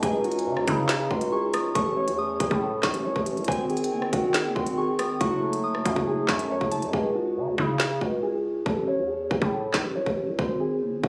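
Drill hip hop with a cold, half-time feel, this short cut opens with a dark, boxy concert grand piano carrying the melody through a low-pass filter and delay, alongside a soft, pure FM synth bell line with chorus and a reedy, breathing hand-pumped harmonium holding sustained chords. At 6.9 s the bell and harmonium stop, the crisp hi-hats drop out and a filter sweep hits the piano, leaving it over the growling, buzzy 808-style bass and an up-front electronic kit with a hard-clipped kick, woody snare, handclaps and rim clicks. The compressed mix carries little reverb and has the feel of a phone recording made in the room.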